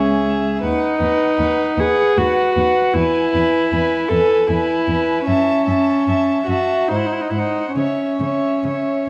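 A rubato triple-metre sway carries this short fragment of an elegiac, yearning slow romantic movement for string quartet, in which a dark, woody first violin sings the melody with vibrato from a distance over a pure, floating second violin played sul tasto, an up-front, warm viola accompaniment with soft attack, and an intimate, close cello bass with light vibrato that falls away at 8.7 seconds, set within the wet reverb of a recital hall.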